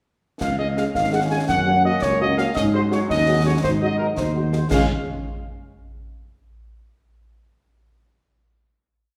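A straight 6/8 pulse at 112 dotted-quarter beats per minute drives this short, festive military-style march for wind band in Db major, a complete piece lasting only a few seconds. Up front, a mellow trumpet section carries the proud melody with a soft attack, smooth top and light vibrato, while a dark tuba, also prominent, anchors the bass on the beats with sustained notes. Behind them, a warm trombone section holds sustained chords, and a distant, roomy French horn section enters at 0.6 seconds with tight after-beat chords and sustained harmonies. The percussion is close and dry, with a marching snare over concert bass drum on the beat and dark-toned clash cymbals. The harmony moves from Db through Gb and a suspended Ab7 that resolves to Ab7, landing on a final Db chord at 4.7 seconds, all set in the wet reverberation of a recital hall.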